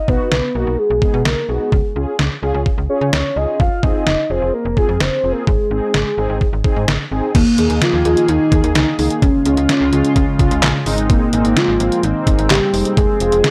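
A detuned 8-bit drum machine sets a straight 4/4 pulse at 128 BPM, its thumpy kick, medium-tuned snare, handclaps, hi-hat and crash cymbal overdriven and sitting up front as if re-recorded in a small room. Beneath it, a slap-like FM bass adds a snappy, metallic attack that quickly decays. Mellow synth brass fills the middle with round, dark, detuned sawtooth tones and a filter sweep, treated with chorus and phaser. On top, a soft, octave-layered synth lead carries the melody from Bb3 to F5 in a full-bodied blend of triangle and sine with a sub octave, vibrato, chorus and phaser. At 7.3 seconds a shimmering pulse-width pad joins with slow-attack chords, bright and ring-modulated, as the harmony moves from B6, Db, Fm and Ab to Ebsus4, Db, Abadd9 and Fm. This nostalgic, wistful synth-pop passage in Ab major, cut from a longer piece, has a dry, gritty hardware sound with light reverb.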